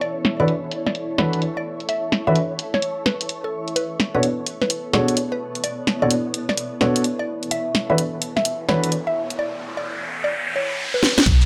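UK garage in a skippy, moody two-step vein at 128 BPM, this short excerpt swings its sixteenths as a woody, round synth pluck carries the melody through chorus, phaser and tape echo. Beneath it, an up-front garage kit of cracking snare, bright hats and shaker sits over a cloudy, detuned granular pad that pumps with sidechain, while a dark, mellow baby grand piano stabs through filter and digital delay across E7sus4 and Bm7 harmony. A riser and downlifter build from 8.7 seconds into a drum fill at 11.0, and the hollow, organ-like FM bass lands with a punchy electronic kick only at 11.3 seconds, as the clip ends.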